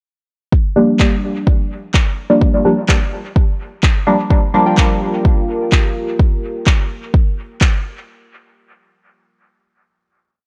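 Dub techno with a deep, nocturnal mood and a steady four-on-the-floor pulse, built on a single Gm7 groove. An overdriven, layered electronic kick sits up front from 0.5 seconds, joined shortly after by analog electronic handclaps that carry a tape-warm tone and a dub echo, sounding as if re-recorded in a large room. A deep, mellow chord stab, soft and dark with chorus, phaser and sidechain pumping, moves one shape in parallel through sparse echoing hits and filter sweeps until 6.0 seconds. Near the close, a brief warbly lo-fi synth-keys figure flickers in the background with a nostalgic square-wave tone, and a moody ambient pad with a slow attack and built-in reverb sustains above the stabs for about a second. The whole piece has a dry, gritty hardware character with a cassette-tape patina and only light reverb.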